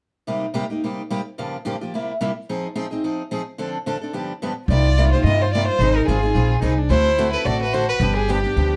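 A bowed violin carries the melody up front in this fiery, swinging stretch of acoustic string swing in C minor, its smooth top shaded with vibrato and portamento. It enters at 4.7 seconds alongside a second violin with a softer attack, which plays a lower supporting line with the same expressive slides. Before that, a bright, picked steel-string acoustic guitar holds the accompaniment alone from 0.3 seconds, its fresh strings and finger squeaks close and clear. The upright bass arrives with the violins, plucked on gut strings with a woody, thumpy tone placed up front. At a brisk 217 BPM with a swung feel, the chords move through Cm7, Fm7 and G7 before turning to Abmaj7 and D7, and the production is dark, with moderate studio reverb.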